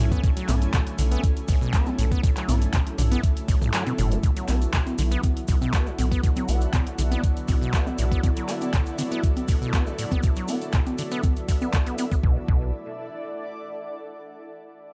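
Acid house at 120 BPM in B dorian, driving and hypnotic, cut from a longer piece. A thumpy, sampler-style kick sits up front with a tape-warm analog drum machine playing congas, handclaps, hi-hat and toms, a grainy tube shaker in the background, a deep, round bass, and a squelchy, resonant sawtooth acid riff coloured by cassette tape and digital delay. Behind them a smooth, detuned pad holds chorused chords and a cloudy granular pad drifts above with its own reverb, both pumping with the sidechain. The kick drops out from 3.7 to 4.2 seconds, the round bass pauses at 8.2 seconds and returns briefly at 12.2, and the granular pad lingers alone to 14.2 seconds in a dark mix.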